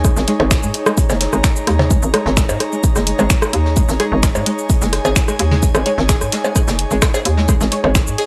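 A digital ambience surrounds this short cut from a longer minimal techno track, cool and clinical at 129 BPM in a straight 4/4 over a single G#sus4 chord. Up front, a punchy, tape-tinged electronic kick, layered and re-recorded in a large room, sits beside a hollow, bouncy FM bass with a fast knocking attack and sidechain pumping. A dry, overdriven analog drum machine adds cabasa, finger snaps and hi-hat, and a minimal click kit of percussion blips, rim click and toms, also overdriven and re-recorded in a small room, joins it, while a faint, distant brush kit with hi-hat and a medium-tuned snare sits far back in its own roomy studio space. In the background, a string-like, twangy resonator pluck plays the riff between D#3 and G#4 with a filter sweep, lush chorus, tape echo and sidechain pumping. Above it, an airy, breathy pad with a slow attack and long release spans D#4 to C#6 with chorus and pumping, and a muted, deep dub chord stab, very quiet and mellow with a filter pluck, enters at 0.3 seconds.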